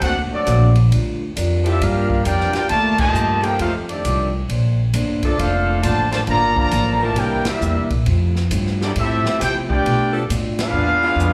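A roomy trumpet section with light vibrato leads this brassy, energetic big band swing passage in F major, riding up front at 134 BPM in 4/4 with a firm swing feel. Beneath it, a clear, tight trombone section carries a second line, both brass groups coloured by plate reverb and slapback echo. A warm, punchy saxophone section enters at 0.5 s with sustained chords from the background, while a boxy, parlour-style steel-string acoustic guitar picks out accompaniment further back. The woody, thumpy upright bass sits forward, and the polished, airy drum kit with its dark cymbals moves between ride, hi-hat, snare, kick and crash, with the whole band hitting accents at 2.9, 7.4 and 10.5 seconds. The harmony runs through rich jazz changes such as Gm9, C9 and Fmaj9 before turning toward E7b9, and the sound is that of a live club gig heard through the venue's PA, cut from a longer piece.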